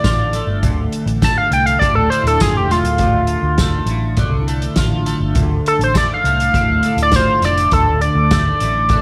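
Mysterious and trippy, this short cut from a longer psychedelic rock piece moves at 102 BPM in a straight 4/4, sitting on a D minor chord throughout. An edgy, tearing sync lead carries an analog synth solo across the full 9 seconds, its sawtooth tone bright and up front, with vibrato, chorus and tape echo colouring its sustained notes between F4 and A5. Beneath it, a double-tracked twelve-string electric guitar plays a clean, compressed, picked riff from D2 to F4, treated with a phaser. A dark, round, foam-muted vintage electric bass anchors the low end from D1 to D2, while a soft-mallet drum kit with a boomy kick, medium-tuned snare and hi-hat sounds as if played in a big room. A jingly tambourine sits close but in the background until 8.4 seconds, and the whole mix carries a light, small-room reverb.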